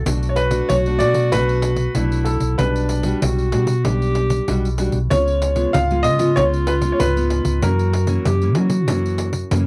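Samba and choro in B minor at 95 BPM in a straight 4/4, this short cut from a longer piece feels sunny and joyful. A clear, intimate baby grand piano carries the melody up front from 0.3 seconds, its action noise audible, while a warm, classical-style clarinet sings a second line beneath it. A bright, full-bodied nylon-string guitar is fingerpicked in a deep classical manner as accompaniment, and a dark, round hollow-body short-scale electric bass sits prominently at the bottom. A jingly pandeiro, played close with hard hands, enters at 0.1 seconds. The harmony moves from Bm7 through Gmaj7/B and C#7 to F#7, all captured in a dry, close 1970s-style studio sound with little reverb.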